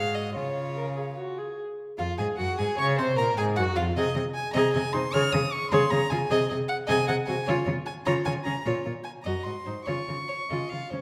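Up front, a period-style cello with a close, gut-string tone anchors the bass of this restless, stormy classical-period string quartet movement, cut from a longer piece, moving quickly in 3/4 at 141-156 BPM in Db major with a rubato feel. Above it, one violin carries a rich, reedy melody reaching high into its range while a second violin plays a supporting line, and a warm viola with a smooth top fills in the accompaniment. The harmony passes through a colourful Gbmaj9#11 before settling back on Db at 9.9 s, all set in the wet reverb of a recital hall.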